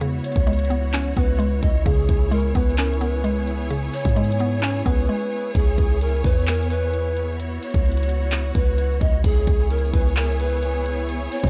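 An 808-style bass, punchy and heavy, drops in alongside a knocking trap kit of kick, crisp hi-hats and handclaps at 130 BPM in a half-time feel, while a woody, warbling FM mallet pluck with chorus plays accompaniment until 5.6 seconds and a lush bowed string section sustains dark chords over C#m7 in C# dorian. From 0.2 seconds an airy, hollow pan flute with a crisp chiff and delay carries a second line, and a faint electronic swell arrives at 11.4 seconds. This dark, hard-hitting trap excerpt has a dry, dark and warm production with the drums and bass up front.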